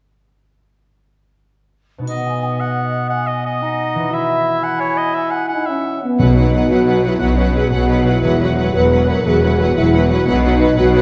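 A ringing, thumb-plucked concert harp opens this heroic, adventurous film-score cue at 2.0 s with arpeggios in B major at 118 BPM in a straight 6/8, and is joined almost at once by a bright, up-front oboe, a vintage-toned clarinet, an airy flute ensemble set back in the distance and a faint triangle. Mellow French horns add sustained chords from 5.5 s, and at 6.2 s the strings arrive: a lush, focused violin melody with vibrato over a richer, distant second violin line, expressive violas with portamento, clear double basses and cellos in the background, marked by a brief, articulate hit of hard-mallet timpani. A wet scoring-stage reverb surrounds the whole passage, lending it a grand, sweeping sense of space.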